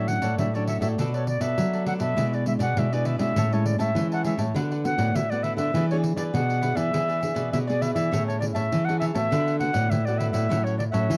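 This short, dry excerpt has the close, intimate sound of a 1970s studio, with the players placed near the listener. It is a festive, lively piece of samba and choro in a straight 4/4, moving through jazzy major-seventh and sixth chords before settling on the home chord near 10.5 seconds. A reedy silver concert flute carries the melody up front in a compact upper range, its straight, tongued tone airy with softened highs. Beneath it, one fingerpicked nylon-string guitar plays the bass line, while a second classical-style nylon-string guitar fills out the chords up front with fresh strings and audible finger squeak. A crisp, picked cavaquinho sits further back in the accompaniment, and a jingly pandeiro, played with hard hands and given a compressed, saturated edge, joins at 0.1 seconds to drive the groove.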